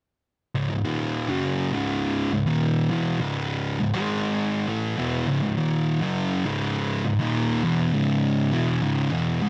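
A light reverb surrounds this short metal passage, cut from a longer piece, with an ominous, hypnotic mood and a straight four-beat feel. A lone fuzz guitar, distorted, double-tracked and placed up front, plays alone from 0.6 s to 9.5 s in its low register, picking through a C#m chord that moves to G#5 at 3.9 s before settling back on C#m.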